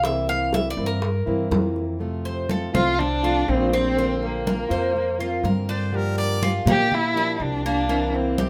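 An expressive bowed violin with vibrato and portamento carries the melody from 2.8 s in this relaxed, sunny excerpt of Cuban son and guajira at 122 BPM in F major, following a metallic, double-strung tres solo that keeps weaving arpeggios beneath it, over a woody pizzicato upright bass, a boxy fingerpicked parlour guitar, tight high-tuned bongos that stop at 2.0 s, damped hard-hand congas with a bright, thin skin, and a brief punchy trumpet line at 5.7 s, set in moderate studio reverb.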